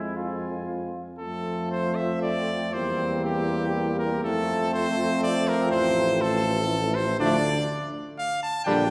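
Moving in a flexible, rubato three-beat lilt, this classical brass quintet passage sounds triumphant and warm, and it is cut from a longer piece. A bright, close-miked trumpet carries the melody up front from start to finish, while a flugelhorn with light vibrato and a vintage tint sings a second line in the background. The French horn, close-miked with vibrato and a soft attack, and the euphonium, with light vibrato in the background, fill in the accompaniment, and a distant, roomy tuba with vibrato anchors the bass. The harmony opens on F minor before turning to F major at 1.2 seconds, then moves through C7 over E, F, and F over A before reaching D minor at 7.2 seconds. A wet concert hall reverb, heard from further back in the room, gives the ensemble a spacious setting.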